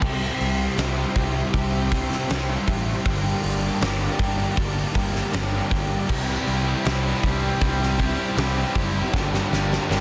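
Shoegaze and dream pop rock with a dreamy, hazy mood, cut from a longer piece, built on a punchy, up-front acoustic drum kit with a fat, softly clipped snare and a round, dark fingered bass under a double-tracked overdriven guitar riff and a dark fuzz guitar thickened with distortion and ensemble chorus in the background. A very quiet, silky vintage string machine with slow attack and long release holds sustained chords over the C and Gmadd9 changes, while a biting overdriven guitar with reverse reverb joins at 6.1 seconds. A drum fill arrives at 9.1 seconds, and the sound stays dry under a dense, heavily limited master.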